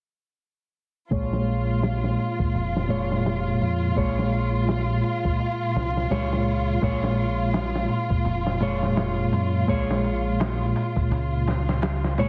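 Brooding and cinematic, this trip hop excerpt moves with a swung 4/4 feel as a mellow, dark electric guitar sits up front, its clean fingered tone shaded by harmonic tremolo, tape echo and a filter sweep, over a veiled, muted string section holding sustained chords. A deep, round dub bass and a gritty, sampler-style drum kit with a thumpy kick, filtered hats and snare, and a large-room sound anchor the groove, all playing from 1.1 to 12.3 seconds across a move from Bbm7 to Absus4. The mix carries light reverb and a heavily compressed, radio-like sound.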